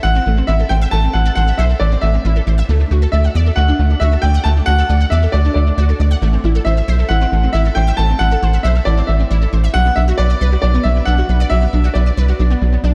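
A rubbery square bass sits up front in this driving, nocturnal synth-pop excerpt, its hollow, bouncy tone saturated and dark under a fast-attack filter pluck. Set at 136 BPM in a straight 4/4 in A dorian, the piece moves through Am, D, Am and Bm across its 12.9 seconds. A clear baby grand piano carries the melody between D5 and A5, its open, long-sustaining notes trailed by analog delay. Beneath it, a detuned unison pluck plays arpeggios from F#3 to F#5, sounding bright and punchy with a wave-folded, ring-modulated edge, thickened by ensemble chorus and analog delay. A lush hall reverb with a 2.8-second tail soaks the dreamy mix, and the whole passage is cut from a longer piece.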